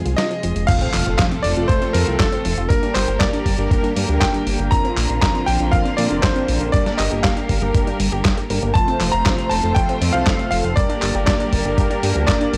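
Nostalgic and melodramatic, this italo disco excerpt in G minor moves at 119 BPM with a straight 4/4 feel, its clear, vintage electric grand piano carrying the melody through tape echo over lush background strings, round chorused synth brass stabs and a glossy, up-front pulse-wave synth bass. A warbling lo-fi pluck with chorus and tape echo spins arpeggios deep in the mix, while a gritty sampler-style kit of snare, handclaps, hi-hat and crash is joined by a thumpy electronic kick that enters at 0.7 s alongside a very quiet electronic impact lasting until 2.7 s. The dry, hardware-recorded sound frames chords that move from Fm to F, through Gm and Bbadd9, and back through F before settling on Gm.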